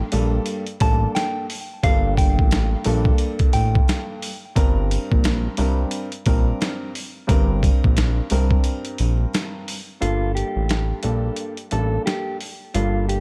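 Boom-bap hip-hop in G minor at 88 BPM with a swung 16th feel, this moody, gritty excerpt pairs a thumpy, pitched-down sampler drum kit and a fat, detuned sawtooth analog bass up front with a dark baby grand piano carrying cassette-tape grain and audible action noise, a clean, fingered electric guitar melody with delay from 0.0 to 4.5 seconds and again from 10.0 seconds, and jingly sleigh bells in the background, all set in dark digital ambience.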